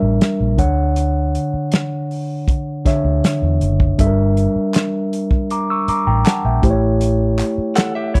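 Lush and smooth, this short cut from a longer 1970s-style soul piece moves at 80 BPM in D major, with a mellow tine electric piano and a dark, round, foam-muted fingered bass up front over a gritty, saturated soul drum kit with a fat snare, tight kick, pumping room sound and rolled-off top. A hollow group handclap joins at 4.7 seconds, and a clean, picked electric guitar recorded direct enters at 7.8 seconds with a compressed riff treated with spring reverb. The chords move from Gm6 to Dmaj7 and back to Gm6 before reaching A7, and the overall recording carries little reverb.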